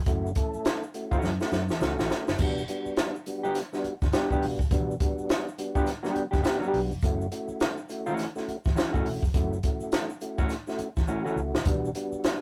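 Hypnotic and driving, this funk excerpt moves at 104 BPM in 4/4 with a swung sixteenth-note feel, centred in E dorian and cut from a longer piece. A punchy, amped fingered electric bass anchors the low end, while a compact cocktail drum kit with a high-tuned snare and punchy kick sits up front, adding fills from 1.2 to 2.4 seconds and again near the end. A tonewheel organ plays stabs through a fast rotary speaker, its clear tone lightly overdriven with audible key click. A dark, clean electric guitar enters at 1.1 seconds to play fingered accompaniment up front, and a grainy, bright egg shaker sits in the background. The harmony moves between F#m7 and Em7 in a tight booth with a rough rehearsal-room character.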